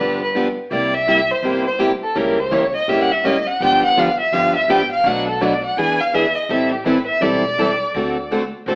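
Heard through an AM radio sound with wet reverb around a band playing live in one room, this lively, swinging excerpt of jazz manouche string swing puts a rich, bowed violin up front for an expressive solo full of vibrato and portamento, backed by two picked steel-string acoustic guitars (one plugged-in and warm, the other bright with fresh strings, both with finger squeak) and a woody, thumpy pizzicato upright bass on gut strings, over changes running from G7 and C7 through C#dim7 to Bm7, E7, Am7 and D7.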